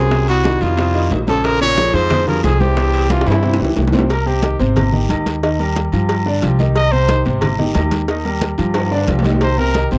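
Afro-Cuban jazz at a fiery, sultry 181 BPM, cut from a longer piece, with an up-front trumpet carrying a vibrato-laden melody over a short-sustained grand piano and a woody, thumpy pizzicato upright bass on gut strings. A bright baritone saxophone with scooped notes and tape echo sits in the background as a second line until 3.6 seconds, while tight, saturated bongos and cowbell, ringing congas, a raspy guiro, and distant metal-shell timbales and agogo bells drive the groove, with a drum fill at 3.1 seconds. From 4.1 seconds the trumpet takes a present, jazz-style solo in short bursts over chords moving between Abmaj7, Eb and G5, all captured in a dry, close 1970s-style studio sound with light reverb.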